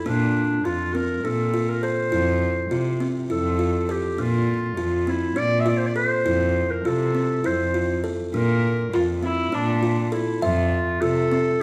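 Contemporary instrumental chamber music in 7/8, moving at 203 BPM counted in eighths with a straight feel in F major, this short passage is cut from a longer piece and carries a playful, shimmering mood. A mellow clarinet carries the melody in a classical style, sounding distant and roomy while still sitting up front. Alongside it, a buzzing kalimba rings out arpeggios with a woody, hollow-box tone from thumbnail plucks. Underneath, a single cellist holds the bass with warm, sul tasto bowing, light vibrato, a soft attack and an airy, intimate closeness. A lone viola adds a brief second line from 8.9 to 10.0 s, nasal and boxy, bowed with vibrato. The harmony alternates between Bbmaj7, Fmaj7 and Bb, all set in a moderate recital hall reverb.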